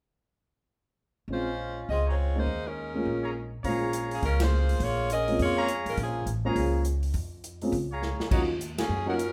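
Big band swing jazz with a brassy, swinging mood, cut from a longer piece. A bright, up-front saxophone section carries the melody with light vibrato, while a woody upright piano comps beneath and a thumpy, pizzicato upright bass with a bright steel-string edge anchors the low end. A mellow trumpet section with a smooth top adds stabs from 2.1 seconds, and the acoustic drum kit, with its punchy kick and medium-tuned snare, joins at 3.6 seconds as the harmony moves into a new section. The band hits accents together, and a drum fill at 8.0 seconds leads toward the close. Moderate reverb from a large studio gives the ensemble a roomy feel.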